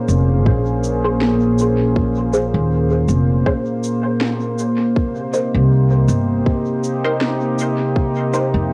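Set at 80 BPM in 4/4 with a light swing on the sixteenths, this hazy, deep ambient dub excerpt sits in Bb dorian, moving from Bbm9 to Cm7 at 5.0 seconds. An electronic kick drum, tight, overdriven and up front, enters at 0.5 seconds, while a quieter electronic shaker and woody snare, also overdriven, carry dub echo through the groove. A pizzicato upright bass with steel strings gives a thumpy, woody low end from F1 to F2, sitting forward in the mix. A smooth, warbling analog pad built from detuned sawtooth and wave-folded sine tones holds sustained chords with a soft attack and chorus, colored by cassette tape. From 1.0 seconds a muted, full-bodied filtered chord stab with a fast attack and short decay adds mellow accents through phaser, analog chorus, dub echo and plate reverb, all heard in a modest booth on a home cassette recording.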